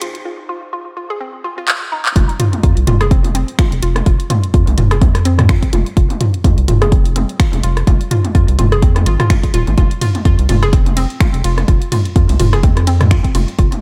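A hollow, detuned square pluck opens this quirky, cool slice of minimal techno, its mellow riff riding a filter sweep over a dark, rubbery bass that pumps in time with the beat. A house kit of finger snaps, handclaps, hi-hat and ride cymbal ticks along quietly with a gentle swing, and a drum fill at 1.7 seconds closes the short build-up. At 2.2 seconds the track drops: a punchy electronic kick lands up front with a touch of small-room reverb, and a garage kit adds rim clicks and toms, its echoes trailing through the groove. The bouncy bass sits prominently in the mix, while the evolving, wave-folded pluck stays further back under chorus and analog delay. An echo-heavy digital ambience surrounds the whole passage, which is cut from a longer piece.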